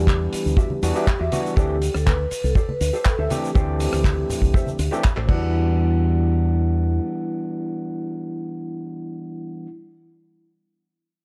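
Sensual and sleek, this nu-disco excerpt moves at 121 BPM in a straight 4/4, sitting in E minor and cycling from Em9 to D7sus4 before returning to Em9 at 5.3 seconds. A soft-mallet vibraphone carries the melody with a ringing, airy tone and medium motor vibrato, trailed by tape echo, while an overdriven tine electric piano supplies barky, gritty accompaniment through a combo amp with sidechain pumping and slapback echo. A mellow electric guitar plays a clean, fingered riff tucked into the background, thickened by lush chorus and its own slapback echo. Up front, a fingered electric bass pushed through an envelope filter anchors the low end until 7.0 seconds, alongside a tight, dark kick drum. A damped 70s kit with crash, handclaps, hi-hat, rim click and shaker, plus soft-handed congas, fills out the groove in a small, dry room, and all the percussion drops away at 5.4 seconds, leaving the keys, guitar and bass to carry the second section.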